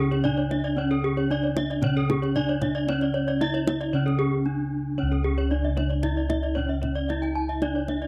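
A straight 4/4 pulse at 114 BPM drives this brilliant, shimmering Balinese gamelan fragment in C# pelog, where a bright, close-miked bronze metallophone carries the melody with a slapback echo, an airy metallophone with the same echo and a dark, smooth one weave paired-tuned arpeggios full of beating shimmer, round, mellow bossed gongs played with padded beaters sit up front in the bass, and a tight kendang struck with hard hands adds percussion, all in a dry, close 1970s-style studio sound with small-room ambience.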